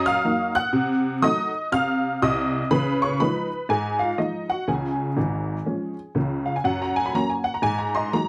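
Playful and swinging, this short stride piano passage, cut from a longer jazz piece, moves at 122 BPM in 4/4 with a 62% swing on the eighth notes. A lone honky-tonk upright piano carries everything from 0.0 to 8.3 seconds, ranging from G#1 up to F#6. Its tone is detuned and jangly, with a woody, vintage character that sits up front and sounds natural. The harmony opens on a rootless Bmaj7 and passes through Cdim7 and C#9 before settling on C#, then shifts to F# at 6.6 seconds for a brief new section that closes on G#5. Close, detailed microphones capture the instrument in a moderate club room with a short reverb tail.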